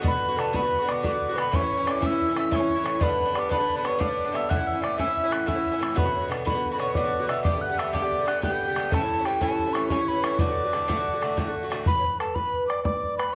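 Rollicking and bright, this Celtic folk slip jig in D major moves at 122 BPM in a straight 9/8, cut from a longer piece. A mellow, hollow mid whistle carries the melody from 0.1 seconds, its metal tone airy and tongued with a touch of chiff, vibrato and rolled-off highs. Behind it, a baroque flute with a crisp attack and straight tone shares a second line with a concert harp, whose fingerpicked strings ring with a warm glow, both sitting in the background. An Irish bouzouki is up front, its double strings picked with a metallic sparkle, until it stops at 11.9 seconds. A boomy, open bodhran with a vintage, band-limited sound drives the percussion throughout, while a wet recital hall reverb and close, detailed microphones frame the ensemble over chords moving from Bm through A and G to a closing D before the harmony drops away.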